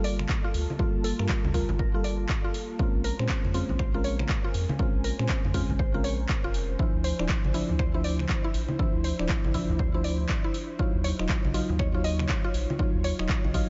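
A swung 120 BPM deep house groove in 4/4 sets a late-night, deep mood, built on an up-front, punchy tape-warm kick, a small-room analog drum machine of finger snaps, handclaps and hi-hat, and ringing, dry congas in the background, while a round, dark analog bass pumps beneath mellow chorused FM electric piano stabs, woody mallet-like pluck arpeggios with delay, and an ethereal airy pad entering at 0.2 s, all moving through Gm9, Bbm9, Dm9 and Ebm9 in a dry, rolled-off mix.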